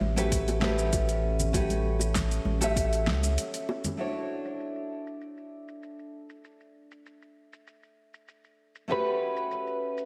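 Set in a big arena sound with a moderately lush hall reverb, this short cut from a longer sunset chillout piece feels smooth and sunny, moving at 98 BPM in a straight 4/4 in D major. Up front, a full-bodied, fingerpicked nylon-string guitar carries the accompaniment throughout, its deep classical tone touched by digital delay and slapback echo, while a round sine sub bass sits beneath it until 3.4 s. Congas and bongos played with soft hands ring close in the background, and a tape-warm electronic kick thumps deep and low in the mix early on. A layered deep house kit adds a fat snare, metallic hats and shaker, all softened by low-pass filtering. After a brief break at 3.4 s, the harmony shifts from A13 to Dmaj9, and at 8.9 s a clean, compressed electric guitar enters on a single B4, bathed in lush chorus, delay and slapback echo as the chords return to A13.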